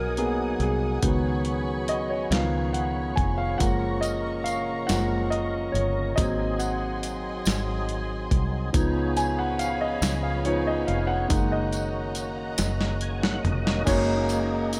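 Uplifting and jubilant, this slow gospel excerpt in F# major rolls along at 47 BPM in a straight 6/8, with a deep-voiced, up-front grand piano taking the lead over a lightly overdriven tonewheel organ whose slow rotary speaker and chorus vibrato fill out the sustained chords. Distant, lush bowed strings with vibrato and portamento float above, while a bright, punchy, foam-muted fingered bass and a gritty, compressed sampler-style drum kit with a thumpy kick anchor the groove, joined at 3.6 seconds by a jingly, saturated tambourine in the background. At 12.6 seconds the drums and organ both break into fills, all set in a light reverb as the chords move from G#m7/B through C#7 to F#maj7 and close on F#6.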